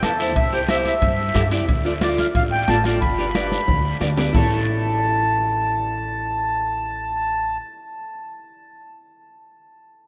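Drenched in a vast, echoing cathedral reverb, this passionate, danceable cumbia moves at 181 BPM in a straight 4/4, cut from a longer piece and passing through C, Dm, G and A. A reedy, mellow accordion sits up front carrying the melody, over a dark, slightly broken-up picked electric guitar and a woody pizzicato upright bass. A distant bombo, soft-handed congas, a raspy guiro and ringing metal-shell timbales drive the groove until a drum fill at 3.5 seconds, after which the percussion drops out at 4.4 seconds and the accordion, guitar and bass carry on alone.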